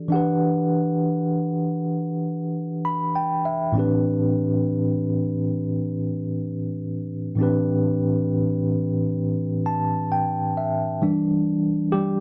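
A clean, up-front tine electric piano with medium tremolo through a combo amp carries this soulful, sultry R&B fragment on its own, cut from a longer piece, moving with a swung feel from Em11 to Am11 with fills at 2.4 and 9.2 seconds before a brief solo turn on Em7 at 11.0 seconds, all set in a wet studio reverb and a dark, warm production.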